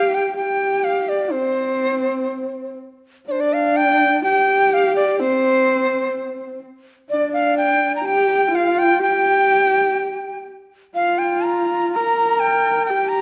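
Chinese traditional chamber music, this short cut from a longer piece sets a festive yet pastoral mood at a slow 62 BPM in 2/4, though the pulse moves freely in rubato. A breathy bamboo dizi carries the melody from C5 to Bb5, its buzzing membrane and soft attack heard close and up front, with vibrato and a slightly unsteady line. Beneath it, a single dark horsehead fiddle plays a second line from C4 to Bb4, bowed on horsehair strings with a woody, boxy, husky tone, leaning on vibrato and portamento. Both instruments sound through the full 13.2 seconds, and the music shifts into a new section at 3.3 seconds. A moderate scoring-stage reverb of 1.5 seconds gives the pair a sense of space while keeping them present.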